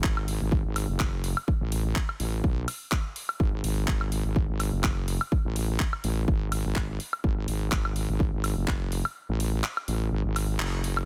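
A punchy electronic kick drives a 125 BPM 4/4 groove with a light 55% swing on the sixteenths, while a layered house kit of handclaps, hi-hat and woodblock sits just beneath it, both re-recorded in a small room and placed up front. Underneath, a heavy wobble bass built from sawtooth and sine tones moves between F#1 and B1, its fast attack and sustained notes thickened by chorus, tube saturation and compression, with sidechain pumping giving it a mellow yet saturated, breathing weight. The mood is gritty and swaggering, typical of bass house, tuned slightly low to A4 = 438 Hz, and the mix is close and dry with little reverb. The kick stops at 8.8 seconds, leaving the bass and kit to carry the groove until the whole band hits an accent at 10.6 seconds. This is a short cut from a longer track, staying in a single section for its full 11.1 seconds.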